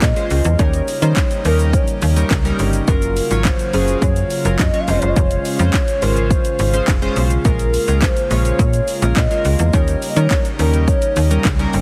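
A straight 4/4 dance-pop groove at 105 BPM drives this confident excerpt, with an overdriven house kit of punchy kick, cracking snare, handclaps, shaker and bright hats sitting up front beside a snappy, metallic slap-like FM bass, while glossy chorused retro synth keys and an airy, breathy pad pump under sidechain through Bbm7, Eb7, Gbmaj7 and Dbmaj7/F beneath a hollow, woody clarinet-like synth lead with chorus and vibrato carrying the melody, all in a heavily compressed radio sound with light reverb.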